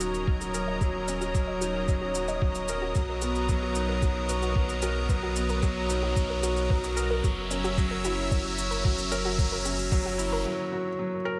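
A light reverb and a tape-tinged haze frame this intimate, melancholic piece of piano and strings electronica, a short cut from a longer build-up in straight 4/4. Up front, a soft felt-muted upright piano plays a mellow riff with audible action noise and delay, drifting over chords that move from D#m7 to Bmaj7 to F#7. A lush, thick, detuned unison pad holds bright sustained chords with slow attack and chorus. Beneath it, a round, dark analog bass pumps with the sidechain, while a warbling, lo-fi pluck plays arpeggios in the background through chorus, delay and a filter sweep. A muffled, thumpy electronic kick recorded in a large room and a produced shaker drive the groove, and an electronic riser enters at 2.5 seconds and runs until a break at 10.5 seconds. The piano carries on alone until the cut at 11.4 seconds.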